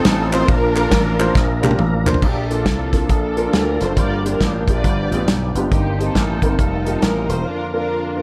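Uplifting and hopeful, this short uptempo gospel excerpt swings at 138 BPM in Bb major, with a lush string section carrying the melody over a lightly overdriven tonewheel organ on slow rotary, a punchy, up-front acoustic drum kit with dark cymbals that plays a fill from 1.4 seconds, a growly slap bass through an envelope filter, a woody upright piano in the background, crisp group handclaps that stop at 2.1 seconds, and a distant, very quiet French horn section that enters at 2.2 seconds, before a brief break at 7.5 seconds, all in light reverb.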